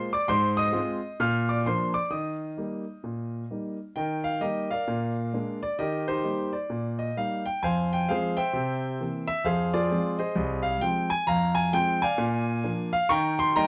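Stride jazz for solo piano, playful and exuberant, swinging in four with a gentle lilt on the eighth notes. A concert grand carries the whole piece alone from 0.0 to 13.7 seconds, spanning a broad range from deep in the bass up into the high treble. Its tone is open and up front, with a deep low end and long sustain that let the chords ring. The harmony moves through familiar changes, settling on Eb at 2.1 seconds before a second section opens at 4.0 seconds and winds through Fm and C7 on its way back home. Close, detailed miking and a light touch of reverb keep the instrument vivid and present in this short passage cut from a longer performance.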